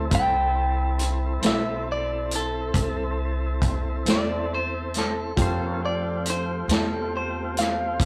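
A slow 12/8 blues pulse at 46 BPM in dotted quarters carries this brooding, smoky excerpt in A minor, with an up-front vintage drum kit (tight kick, medium-tuned snare and hi-hat, its top rolled off) and a woody pizzicato upright bass at the base. A clean, compressed electric guitar picks the melody with a warbly pitch drift, while a smooth tonewheel organ holds sustained chords through a slow rotary speaker and a bright, barky tine electric piano with phaser sits in the background. The harmony moves from Am to Fmaj7 at 5.4 s, captured as a rough rehearsal-room recording with moderate studio reverb.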